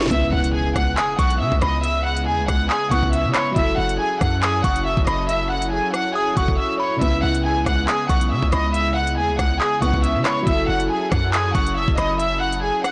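A lush, bowed violin section carries the melody up front in this tense, dark drill track, its vibrato expressive even though the ensemble sounds distant and softened by a low-pass filter. Beneath it, a mellow, boxy concert grand piano sits in the background, while a smooth, warbling vintage analog pad with subtle chorus holds sustained chords as the harmony alternates between C#m7 and F#m7. The half-time groove comes from an electronic drill kit with a knocking kick, crisp hi-hats, rim clicks, handclaps and a sharp snare given soft clipping, paired with a punchy, heavy 808-style bass that hits fast and decays. A very quiet reverse cymbal and impact opens the cut up to 1.8 seconds, and from 1.0 seconds a delicate, tinkling FM tine bell adds a second line through chorus and digital delay. The blown-out, overdriven recording carries light reverb and vinyl crackle, and a brief silent gap at 6.6 seconds breaks the flow of this fragment from a longer piece.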